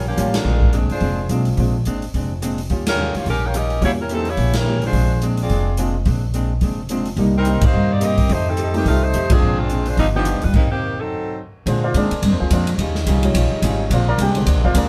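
A tight saxophone section opens this swinging, brassy big-band excerpt with the melody, its vibrato and smooth top sitting up front over a dark, clean hollow-body archtop guitar and a woody, thumpy pizzicato upright bass. Almost at once a baby grand piano with audible action noise and a polished, airy drum kit join in, the kit's punchy kick, medium-tuned snare, hi-hat, ride and crash driving the swing feel. The whole band hits a string of accents through the opening stretch, moving through rich ninth, diminished and minor seventh chords before a stop at 10.5 seconds. At 11.7 seconds the intimate, short-sustained piano steps forward for a solo while the saxophones return as distant, roomy sustained chords in the background. Moderate studio reverb places the band together in one room, giving the cut a live, cohesive sound.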